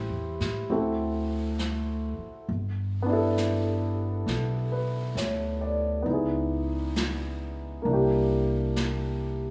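A light reverb gives this short excerpt the close feel of a small room, with a polished, long-sustaining upright piano and a woody pizzicato upright bass both sitting up front. It's a late-night, romantic jazz ballad at 67 BPM in swung 4/4, the piano accompanying through Am9, D7 and G6/9 before moving to C#m9 and C9. A distant, roomy brush kit on brushed snare, snare and hi-hat joins at 0.4 seconds.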